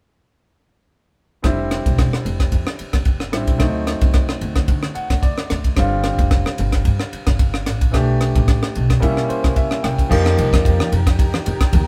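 A tight funk drum kit with bright cymbals, a growly pizzicato upright bass and a brilliant concert grand piano, which adds fills at 4.7 and 9.0 seconds, open this funky, slick electric jazz fusion passage at 111 BPM in F major with a light sixteenth-note swing, before veiled, distant muted strings enter at 10.1 seconds as the harmony moves to F9sus4 and soft, low-tuned congas join just after.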